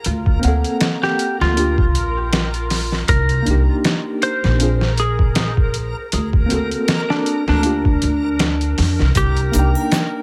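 A swung 16th-note groove at 79 BPM in 4/4 opens this brooding, melancholic trip hop passage in C minor, cut from a longer piece, with a gritty, pitched-down sampler-style drum kit of thumpy kick, medium-tuned snare and hi-hat sitting up front. A woody pizzicato upright bass, also prominent, moves in its low register beneath a mellow tine electric piano whose tremolo-treated chords trace a dark cycle of D7b13, Gm7, Cm7 and Bb9. From 1.0 seconds a bright, twangy lap steel played with a slide carries the melody, its clean tone colored by tape echo. Faintly behind it all, a reversed, detuned texture holds a dreamy Bb4 with a slow attack, its granular shimmer bathed in its own reverb. At 9.2 seconds a close, dry egg shaker, triangle and handclap touch in softly near the end, in an otherwise dry, intimate mix.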